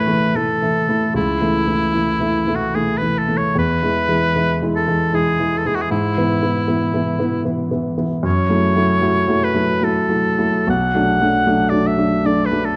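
Romantic classical duo in A major, serene and tender, moving in a rubato 3/4 at 76 BPM, where a clear oboe with light vibrato sings the melody up front over a warm, intimate grand piano accompaniment whose natural action noise is audible, the harmony drifting from A through E and F#m7 to Bm7 inside a moderate recital-hall reverb and a dark production, in a fragment cut from a longer piece.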